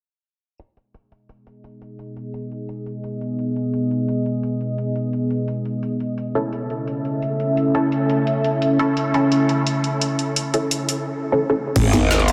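A dreamy mix soaked in vast reverb and dulled by a low-pass filter opens this tense, futuristic slice of dark technical drum and bass, set at 172 BPM in G# phrygian and cut from a longer piece. Drums arrive at 0.6 seconds with a woody snare, bright hats and crash, overdriven and set in a small room, while a deep, moody pad of detuned, wave-folded sawtooth and sine layers swells in at 1.9 seconds with slow attack, chorus and sidechain pumping, sitting up front under a long filter sweep. From 6.4 seconds a muted, evolving dub chord stab with filter pluck, phaser and analog delay adds dark, short-decaying hits as the harmony moves from G#m to A. At 11.8 seconds an impact lands on the return to G#m: an overdriven, knocking electronic kick and a sub drop sit in the background while a growling, wobbling bass on G#1, saturated and formant-filtered, pushes forward as the loudest part.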